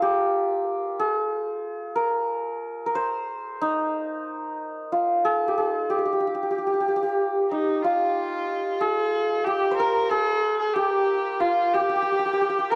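A slow, straight 6/8 pulse at 61 BPM, felt in dotted quarters, carries this longing, melancholic Persian passage, cut from a longer piece and tuned to A4 = 439 Hz. The bright, shimmering santur leads the melody from the start, and at 7.5 s a clear, nasal kamancheh joins with a bowed second line, colored by light vibrato and portamento, just before the opening phrase returns at 7.8 s. The sound is dry and close, like a 1970s-style studio recording in a small room.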